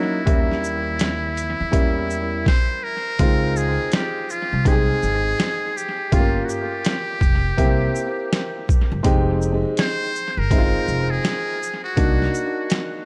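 Swung sixteenths at 82 BPM in 4/4 carry this relaxed jazz-hop fragment. A gritty, pitched-down boom bap kit with thumpy kick, medium-tuned snare, hi-hat and shaker sits up front from 0.3 s beside a woody pizzicato upright bass. A clear, vintage-toned upright piano and a buzzy, breathy trumpet in a metal mute, soloing with light vibrato, open the passage with analog delay, an effect the drum kit shares. The harmony moves from Eb7b9 through Dbmaj7, Gm7b5, C7 and Fm9 to Cm7b5, all wrapped in light small-room reverb in an echo-heavy mix.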